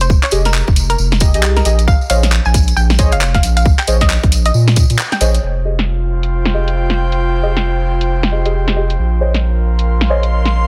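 A dense, heavily limited, dry mix opens this moody, bouncy two-step UK garage cut at 135 BPM in F minor, swung on the sixteenths, where a thick, saturated sub bass pumps against the up-front tight electronic kick, cracking snare, bright low-passed hats, handclaps and a jingly vintage tambourine in the background. A hollow, nasal square pluck carries the melody through chorus, tape colour and dub echo alongside soft, dark chord stabs cycling Fm7 to Bbm11, and the pluck, tambourine and kick drop out around 5 seconds, close to a band accent at 5.0. From 5.4 seconds an airy, breathy pad with a slow attack and chorus enters over the continuing bass, drums and stabs, pumping with the sidechain until the cut ends.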